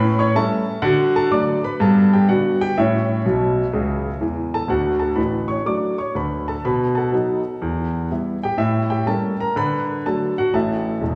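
Swinging and exuberant, this short stride piano cut from a longer jazz piece moves at 124 BPM in 4/4 with a firm swing on the eighth notes, set in D major and tuned slightly high to A4 = 441 Hz. A clear concert grand piano plays solo from start to finish, spanning the keyboard from deep bass notes down at E1 up to D6. The instrument sounds intimate and polished, sitting up front with long sustain and audible action noise that brings the listener close to the keys. A fill on the grand piano from 3.2 to 4.7 seconds closes the opening section before a second section begins at 4.7 seconds, where the harmony turns through B7, E minor and A7b9 on its way back home. The piano is bathed in a wet concert hall reverb with a two-second tail, giving the close, present tone a spacious bloom.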